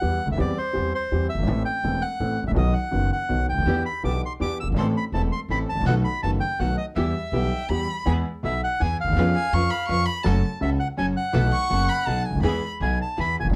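A passionate, dramatic tango in 3/4 at 164 BPM, played with a rubato feel, this cut from a longer piece moves from E minor into E major at 8.1 seconds. A reedy, dark bandoneon carries the melody up front, its smooth tone set in plate reverb, while a concert grand piano with a deep bass and vintage, short-sustained sound supplies the accompaniment. An acoustic upright bass, plucked pizzicato on steel strings, adds a woody, growly low end. From 3.7 seconds a distant, lush symphonic string section places focused, bowed stabs in the background, and at 7.3 seconds a single close violin enters with a second line full of vibrato, portamento and a soft attack. The harmony leans on dominant chords such as B7 and C#7/E#, resolving to E major, all within a moderate club ambience and a dark, warm production.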